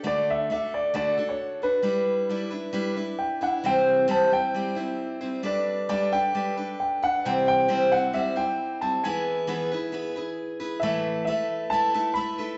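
A steady, straight 4/4 pulse at 134 BPM drives this short rock excerpt, cut from a longer piece, with a jangly, warm mood. A bright, picked steel-string acoustic guitar sits up front as accompaniment from the very start at 0.0 s, ranging from A2 to C5. A warm grand piano carries the melody between B4 and B5, entering at 0.1 s and also placed up front. The chords move from D and G6 through C, Gadd9 and E before settling on Asus2 at 10.8 s, across three short sections. The band sounds as if it is playing live in one room, bathed in a wet large studio reverb, and the top end is rolled off above 7.7 kHz.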